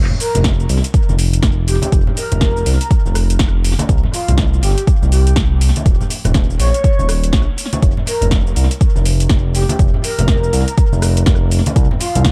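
Deep house at 122 BPM in a swung 4/4, smooth and moody, with a nasal, sawtooth-edged synth bass pumping up front from the first moment and an overdriven kick entering at 0.4 seconds. A punchy snare, metallic hats, rim click and shaker from the overdriven kit sit with ringing, hard-hand congas in the background, both carrying tape echo, while a breathy, flute-like lead drifts through chorus and dub echo with vibrato. Chords move from Fsus4 to C5 and Eb5 and back in this short cut from a longer piece, all set in an echo-heavy digital ambience.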